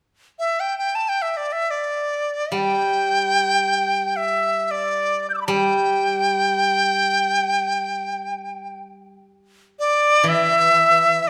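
Flowing in free time, this graceful, festive Chinese chamber piece opens at 0.4 seconds with a dizi carrying the melody between D5 and G6, its pure bamboo tone edged by a buzzing membrane, with soft attacks, vibrato, an unsteady quality and a place up front in the mix. At 2.5 seconds a steel-string zither joins in accompaniment, low and quieter, its silvery, ringing fingerpicked notes staying between E3 and G3. A moderate recital-hall reverb surrounds both players, and the music turns to a new section at 9.2 seconds in this brief cut from a longer work.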